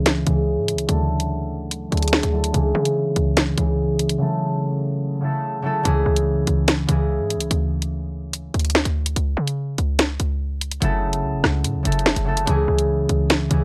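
A half-time drill groove in 4/4 drives this tense, menacing hip hop excerpt, with an electronic drum kit of bright hi-hats, a rim click and a sharp snare sitting up front. A short 808-style bass punches underneath, its tight sine tone carrying a noise layer, a fast attack and a decaying tail. Above it a fingerpicked concert harp plays ringing acoustic accompaniment through a low-pass filter that sweeps across its part until 5.9 seconds, while a break arrives at 4.2 seconds. The harmony stays dark, moving between C#m, Dadd9 and F#m7 with a chordless stretch midway. The mix is dry and close, with little reverb, and the passage is cut from a longer piece.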